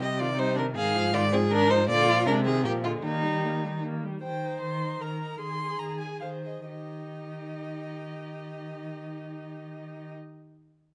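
Spirited and graceful, this quick classical-period movement for string quartet in 3/4 and Eb major moves with a rubato feel, as a dark, expressive first violin with portamento and soft attacks carries the melody over a smooth, up-front second violin, a focused, distant viola and a rich cello bass, easing into a slowdown from 3.6 to 6.7 seconds before settling on Eb in this closely miked excerpt with light reverb.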